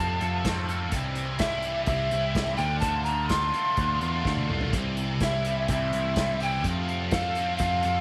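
A small room's light reverb frames this jangly, upbeat indie rock excerpt in C major, moving at 126 BPM in a straight 4/4 over F, C and Dm chords. A breathy bamboo pan flute carries the melody with vibrato, a chiffy attack and slapback echo, while a raw, overdriven garage guitar with phaser and a scooped, high-gain distorted guitar with ensemble chorus and slapback echo both play riffs. Beneath them, a dark, round picked electric bass sits up front, and an acoustic drum kit played with bundle sticks, with its punchy kick, medium-tuned snare, hi-hat and toms, adds a fill at 4.3 seconds.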